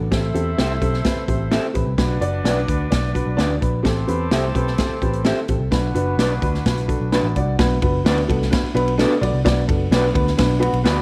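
Uptempo 1960s-style soul at 128 BPM in a straight 4/4, passionate and driving, with a worn, woody, slightly detuned upright piano and a round, foam-muted picked electric bass carrying the groove over Am7 and Bm chords. A punchy, up-front acoustic drum kit works hi-hat, kick, snare and ride, an electric guitar through a small old amp adds slightly broken-up stabs, and a clear, tight horn section with light vibrato and octave doubling plays a second line until 7.3 seconds, partway through the piano's fill. Near the close of this cut from a longer piece, a clean, fingered electric guitar sits in the background with a mellow riff from 10.4 seconds, and the mix carries a light studio reverb.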